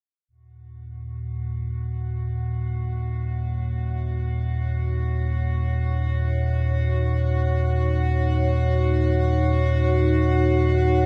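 A deep, rumbling drone sits up front from 0.7 seconds, anchoring this cavernous, ominous dark ambient fragment in its own reverb. An eerie, metallic inharmonic drone with chorus and built-in reverb joins at 1.4 seconds, and a moody, full-bodied analog pad with detuned sawtooth and a sub octave arrives at 3.1 seconds to hold sustained minor chords. The pad and the synth drone both fade in gradually, all set in a huge ambient space.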